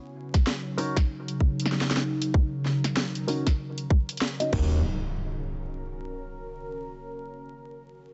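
Glitch hop at 96 BPM in 4/4 with a 16th-note swing, this short cut from a longer piece feels playful and gritty, moving from Ebm7 to Gb/Db. A deep, moody ambient pad of detuned unison saw and sine with a sub octave sits underneath from the start, softened by chorus and reverb and pumped by the sidechain. Over it, a warbling, nostalgic tape-like pad carries the sustained chords, its lo-fi 12-bit sampler grit colored by chorus, phaser and reverb. A tight, up-front electronic kick and a layered drum and bass kit with a cracking snare, hi-hat and crash drive the groove, while a clean, picked electric guitar plays compressed stabs through lush chorus, delay and a low-pass filter that sweeps across the opening. Near 4.5 seconds a saturated, aggressive synth bass punches in on a low Eb alongside an up-front impact that rings until about 7.0 seconds, and the whole mix wears a dusty layer of vinyl crackle with a dulled top end.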